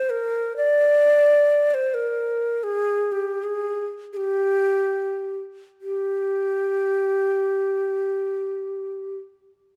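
A close-miked ney sits up front in a light reverb, its reed-cane tone breathy and warm. This short fragment of Turkish music, cut from a longer piece, unfolds in free time in G makam kurdi, and its mood is soulful and longing. The end-blown ney plays alone from 0.0 to 9.2 seconds, moving between G4 and D5 with a straight, tongued tone. Its first phrase runs until 5.8 seconds, when a second passage begins that lasts to 8.4 seconds, and the ney carries on alone briefly after that. The intimate placement lets every breath in the airy tone come through clearly.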